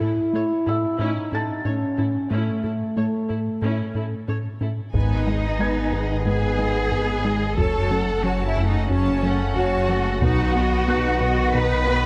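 A moderate scoring-stage reverb surrounds this tense, futuristic stretch of hybrid orchestral and electronic film score at 91 BPM in G# phrygian, opening with a tight sequenced synth arpeggio, a rubbery square bass riff, an expressive cello section up front, lush viola accompaniment and soft-attack French horn chords that end by 4.2 seconds. A felt-muted upright piano adds a faint, delayed texture high above. At 4.9 seconds the music grows heavier as brilliant trombone chords, a pure sine sub bass, distant double basses, quiet taiko drums and a second line from distant symphonic violins join, while a clear studio violin section carries a smooth melody in the background.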